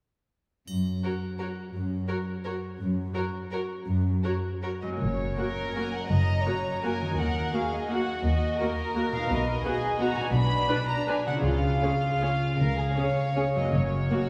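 A rubato waltz in 3/4, moving between 149 and 184 BPM, opens this elegant, sweeping orchestral excerpt in F# major, where dark cellos and a brief, dry triangle tap at 0.7 s set the ground before violins carry a floating, sul tasto melody over a rich second violin line and distant, pure violas. At 4.8 s a ringing concert harp begins its arpeggios, and at 5.0 s the double basses join the cellos as the harmony unfolds through F#, D#m, B, Bm and C# before returning home to F#. The church reverb lends the whole ensemble a long, glowing bloom, while soft-attack bowing gives the violins, violas and double basses a gentle onset.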